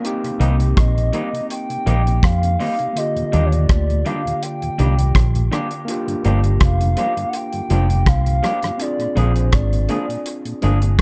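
Sweet and smooth, this short lovers rock reggae excerpt moves at 82 BPM in Eb major with a gentle swing on the sixteenths. The damped 70s drum kit sits dry and up front, its tight kick, hi-hat and rim click trailed by dub echo, while a vintage muted fingered electric bass, round and foam-muted, anchors the low end just as prominently from 0.4 seconds. A gritty, barky overdriven tine electric piano, also touched with dub echo, comps through the whole passage, and a mellow tonewheel organ glows in the background with chorus vibrato and a slow rotary speaker. An electric guitar through a small old amp adds slightly broken-up, compressed, lo-fi stabs. From 0.8 seconds a hollow, woody clarinet-like synth lead carries the melody high above, soft and sustained with vibrato, chorus and tape echo, over a dark production that cycles through Cm7, Ebmaj7, Gm7 and Bb7.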